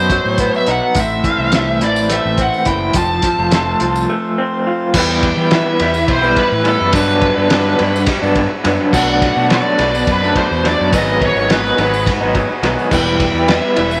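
Dark and hypnotic, this psychedelic rock excerpt moves in a straight 7/8 at 211 BPM in E minor, its harmony drifting from B and Am through F into Em, Gmaj7, Bm7 and G#m7 after a brief break at 4.1 seconds. A warm, slightly broken-up electric guitar riff with tremolo sits up front, joined by a round fuzz bass, a muffled cloth-damped drum kit with a fat snare and dark cymbals, and a jingly tambourine entering at 0.5 seconds. Above a reedy, breathing harmonium holding chords in the background, a smooth overdriven lead guitar sings its melody through wah and slapback echo, all set in a moderate echo chamber with small-room ambience.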